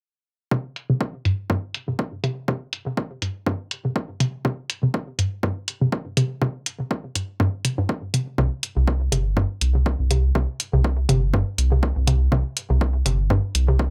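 Sparse and hypnotic, this minimal techno excerpt moves at 122 BPM in 4/4, with a 55% swing on the 16ths and a C5 chord at the opening. From 0.5 seconds, a hollow, detuned square-wave pluck carries the riff, its bouncy, short-decay tone thickened by chorus, a noise layer and digital delay, and pumping against the sidechain while a filter sweep runs across it. An up-front analog kick with a punchy, tape-tinged body and low-passed hi-hats hold the groove, both re-recorded in a small room. At 8.4 seconds a rubbery, dark square bass with a wave-folded edge arrives, driven by tube saturation and pumping under the sidechain as the loudest part. A light reverb surrounds the sparse mix.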